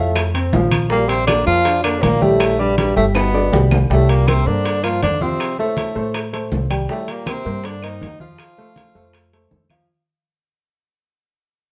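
Heard in a moderate studio room, this sophisticated, danceable Afro-Cuban jazz excerpt at 160 BPM puts a breathy, whispered tenor saxophone with plate reverb and scooped vibrato notes up front over a thumpy, dark pizzicato upright bass, while a veiled, growling cup-muted trombone sits behind them and a baby grand piano with audible action noise accompanies; very quiet bongos, woody claves, bright low-tuned congas and ringing metal-shell timbales join at 0.2 seconds, a drum fill arrives at 3.2 seconds, and the recording fades out from 3.9 seconds.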